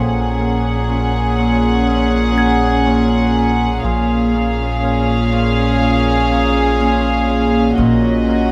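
A slow, straight 4/4 pulse at 61 BPM underpins this eerie, uneasy suspense-film-score fragment, where two violin sections play soft-attack sul tasto lines, one rich and distant carrying the melody and one close and chamber-like with a second line. Around them sit a dark, woody viola section, a floating symphonic cello section, a close double bass section, a deep, punchy sine sub-bass drone, a ringing fingerpicked Celtic harp riff and glassy, beating glass harmonica chords over a Gbadd9/Bb to Db/Bb to Ebm7/Bb progression. A delicate, slightly out-of-tune music box tinkles until 5.3 seconds, and a very quiet taiko ensemble with heavy sticks enters at 7.8 seconds, all in light reverb with close, detailed microphones.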